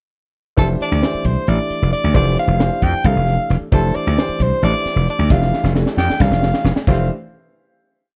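Funky and slick, this short, complete electric jazz fusion piece grooves in 7/8 at 267 BPM, counted in eighths, in F major. A punchy, bright slap bass riff sits up front, and a crisp acoustic drum kit with a high-tuned snare and tight kick pumps in a small, saturated room. Over them a growling soprano saxophone plays a raspy, vintage jazz solo of hook-like motifs with vibrato and scooped notes, a warm concert grand adds quartal funk chords with audible action noise, and after a drum fill from 5.3 seconds the piece settles on a final chord at 6.9 seconds in studio reverb.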